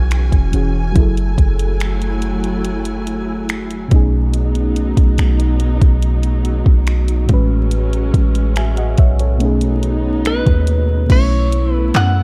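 A straight 4/4 groove at 71 BPM from a soft-kicked electronic R&B kit of kick drum, finger snaps, handclaps, hi-hat and crash cymbal anchors this smooth, tender contemporary R&B excerpt, where a deep, boomy 808-style bass sits up front beneath a round, chorused FM electric piano and lush, distant bowed strings with vibrato and sidechain pumping, moving through chords such as F#m9, B13 and Amaj9 before a clean, picked electric guitar melody enters at 10.3 s, the whole mix carrying a dark, dry production with vinyl crackle.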